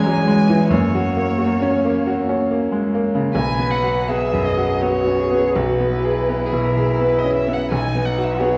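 A reverberant recital-hall acoustic with a 1.8-second decay wraps this passage, cut from a longer slow romantic movement for piano trio and heard as if in a church or concert hall. In B major and 3/4, tuned to A4 = 441 Hz, the music breathes with a flexible rubato between 66 and 87 BPM, its mood serene and lyrical. A bright, brilliant concert grand sits up front with deep bass, supplying the accompaniment, while a single muted violin, heard close and bowed con sordino with vibrato, sings the melody in a dark tone. Beneath it, one bowed cello, also con sordino, carries a veiled second line with a soft attack, vibrato and gliding portamento. The opening phrase gives way to a second section at 3.3 seconds, where the harmony settles from F# toward B5, E/B and finally a B chord.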